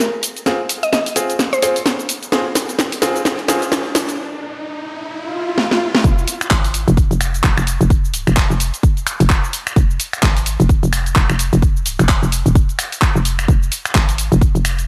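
Bass house cut from a longer piece, bouncy and gritty with a light swing, where a woody, detuned mallet-like synth pluck and worn, brilliant baby grand piano stabs with audible action noise ride a tape-warm house kit of cracking snare, claps, snaps, hi-hat and shaker early in a build-up that then adds an electronic riser, before the drop at 6.0 seconds brings in a punchy layered kick and a hollow, knocking FM bass pumping up front.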